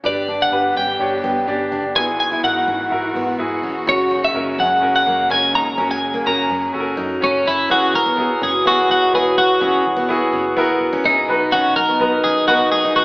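A clean, compressed twelve-string electric guitar carries the melody up front with spring reverb in this uplifting, anthemic piano-driven pop excerpt at 125 BPM, backed by a clear concert grand piano with deep bass, a full-bodied steel-string acoustic guitar riff with finger squeak, a round, foam-muted electric bass in the background, and distant, lush bowed strings with portamento that stop at 7.7 seconds, while a French horn section with light vibrato adds a second line from 3.9 seconds, the band playing live in one room with a large studio reverb and an AM radio sound.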